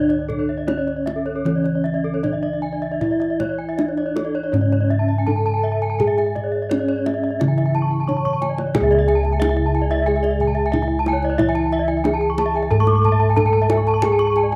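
Brilliant and shimmering, this straight Balinese gamelan passage, cut from a longer piece, sets several bronze metallophones over bossed gongs and kendang. The lead metallophone carries the melody with padded disc mallets, its mellow, soft tone carrying a vintage, band-limited color and the beating shimmer of paired tuning. A lower metallophone supplies a soft, airy accompaniment tucked in the background, while two horn-mallet metallophones ring out bright, high arpeggios with shimmering beats, one of them thrown back by a slapback echo. The bossed gongs hold the bass, round and up front with a mellow, beating resonance from padded beaters, and the kendang adds tight, acoustic percussion with a small-room feel. A drum fill from 8.1 to 8.8 seconds leads into a new section, and a moderate spring reverb with studio ambience surrounds the ensemble.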